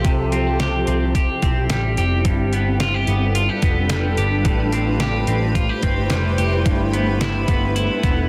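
Dream pop excerpt with a floating, blissful mood, in which a shimmering, detuned ambient pad sustains chords through C, G7, Am7 and G6 beneath bright, twangy clean electric guitar arpeggios coloured by lush chorus and delay, a dark, round, foam-muted picked bass, and a thumpy, overdriven 8-bit drum machine of kick, snare and hi-hat, set in light reverb with a dense, heavily limited master.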